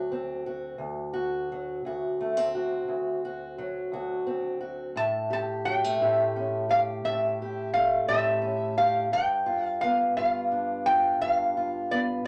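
A wet club reverb surrounds this short cut from a soulful, rollicking acoustic country blues in 12/8. Up front from the start, a fingerpicked steel-string parlour guitar with old strings, woody and boxy, carries the accompaniment over D7, A7 and G7 chords. At 5.0 seconds a lap resonator guitar enters up front with a metallic, nasal slide melody played with fingerpicks.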